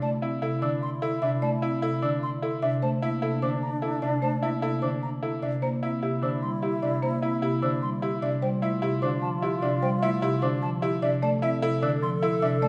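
Running in a straight, steady 7/8 pulse of eighth notes, this brief cut from a longer minimalist classical work feels meditative yet urgent. A buzzing marimba played with soft mallets carries the melody, its hardwood bars sounding dry and woody, while an alto flute with airy vibrato and lifted highs traces a second line beneath it. Lower down, a round, warm rosewood marimba, also with soft mallets, sits up front as the accompaniment, and a clear baby grand piano with short sustain plays arpeggios in a narrow middle register. High above, a hollow, pure-toned silver concert flute adds its own arpeggios from the background. All five parts play together for the full 12.7 seconds, moving through harmonies such as Bbmaj9, Dm9 and Fmaj7 in a moderate stage reverb.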